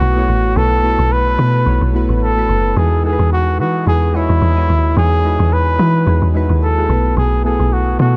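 A bucket-muted trumpet carries the melody up front, its veiled, mellow jazz-style solo line colored by vibrato and a touch of delay, in a relaxed, soulful amapiano groove at 109 BPM in E major with a light 16th-note swing. Beneath it, soft electric-piano-like synth keys with chorus and a filter sweep give round, full-bodied support over B7sus4 and Emaj9 chords. A deep, dark log drum bass with a fast, percussive attack sits prominently in the mix. The 8.2-second fragment, cut from a longer piece, has a small room reverb and audible lossy compression artefacts.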